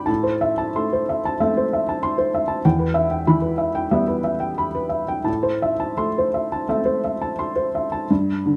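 Captured live in a stone room with a moderate reverb, this short, peaceful and tender fragment of neoclassical minimalist piano presents a felt-muted upright alone and up front, its boxy, mellow tone with short sustain and audible action noise moving in a rubato 4/4 at 84-97 BPM through Am, Em and back to Am across a range from E2 to D6 over 8.6 seconds.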